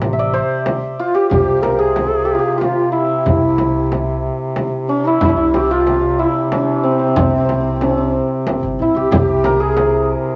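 A festive Persian modal ensemble excerpt in a straight 3/4, led by a shimmering, hammered santur up front over a vibrato-laden duduk drone with scooped notes, woody pizzicato upright bass, a deep frame drum played with soft hands and a tight tombak in the background, while a breathy, bright low ney enters at 1.0 seconds with a soft-attacked second line, the santur, duduk and ney carrying a cassette-tape tint in a homely room with moderate reverb.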